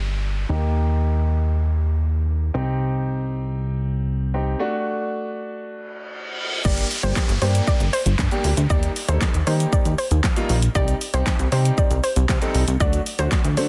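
A dense, heavily limited modern master in digital ambience carries this bittersweet, confident dance-pop excerpt in G minor at 117 BPM, where a clear, smooth concert grand piano under a filter sweep and a punchy, funky analog bass with ring modulation both pump to the sidechain, while a downlifter and reverse cymbal sweep through the opening seconds and return after a break at 4.6 seconds, the reverse cymbal rising into the drop. At the 6.6-second drop a layered electronic pop kit arrives up front with a punchy kick, fat snare, handclaps, hi-hat, shaker and crash, alongside a hollow, warbling square pluck melody with chorus and tape echo. Underneath, the chords move through Eb, Cm, D and Gm.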